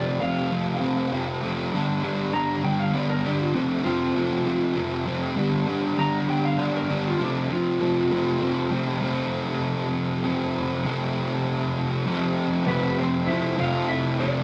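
A slow, straight 6/8 lilt at 66 dotted-quarter beats per minute carries this bittersweet, restless rock excerpt, with a dark, distorted, double-tracked fuzz guitar riff sitting up front across the whole clip as the chords sway between F and G. Over it, a picked electric guitar through a small old amp plays the melody, its tone slightly broken-up, compressed and lo-fi, taking a clean solo until 8.7 seconds before dropping out and returning at 12.7 seconds. A wet studio reverb hangs over the rough rehearsal-room sound.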